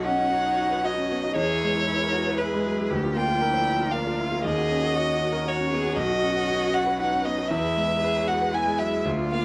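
Neoclassical piano and strings in a tender, intimate 3/4 at 117 BPM with a rubato feel, where a smooth, bowed solo violin carries the melody up front with even vibrato, a clear grand piano with long sustain accompanies, a rich solo cello adds an expressive second line with soft attacks and portamento, and a dark chamber string section holds sustained chords in the background over a progression moving from Badd9 through E, A#/D and D#m7, all captured in a dry, close, 1970s-style studio sound with small room reverb in this 9.4-second excerpt.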